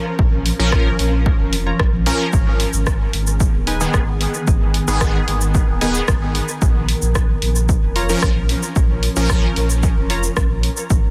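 Deep and cavernous, this short dub techno excerpt moves at 112 BPM in a straight 4/4, cut from a longer piece and sitting in a minor mood that shifts from A#m to G#m at 2.3 seconds and back at 6.6 seconds. A cloudy, evolving granular pad holds blurred triangle-wave chords from the very start, its own reverb and sidechain pumping giving it a breathing, hazy quality, while a round sine sub bass enters at 0.2 seconds alongside a dry, punchy analog kick. A layered deep house kit of dark hi-hats, rim clicks and shaker, re-recorded in a small room, trails dub echo behind it. A juicy, detuned sawtooth polysynth plays resonant stabs with filter sweeps, chorus and phaser, and a crisp wavetable chord riff with a filter pluck sits in the background, coloured by cassette tape, pumping and echo. The mix is dense and heavily limited with little reverb overall, and a layer of vinyl crackle runs through the sound.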